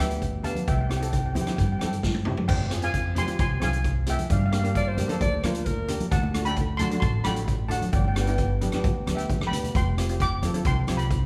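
A carefree, festive calypso excerpt at 132 BPM opens with two shimmering steel pans, a bright, airy lead melody over a double-seconds accompaniment, joined by woody, thumpy pizzicato upright bass, an up-front street-band drum kit with a boomy kick, dark cymbals and fills at 2.0 and 9.4 seconds, and ringing congas tucked in the background, while a breathy alto saxophone with vibrato slips in a brief second line from 4.8 to 6.0 seconds, all set in a moderate recital-hall reverb.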